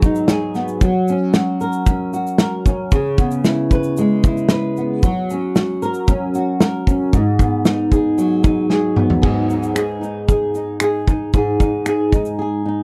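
Wistful and tender, this short acoustic pop excerpt moves at 114 BPM in a straight 4/4, set in G# minor. A double-tracked flamenco guitar carries the accompaniment, fingerpicked and up front with a warm tone and audible finger squeak, spanning G#2 to B4 across the full 12.8 seconds. A loose indie drum kit plays alongside until 12.4 seconds, mixing finger snaps, shaker, a tight kick, a medium-tuned snare, toms and dark crash cymbals in a small, pumping room. The harmony moves from G#m7 to F# and C#m7, then back through F# to G#m7. Drum fills at 8.7 seconds and again at 12.4 seconds mark the turn into a second section and the close, all under a light reverb.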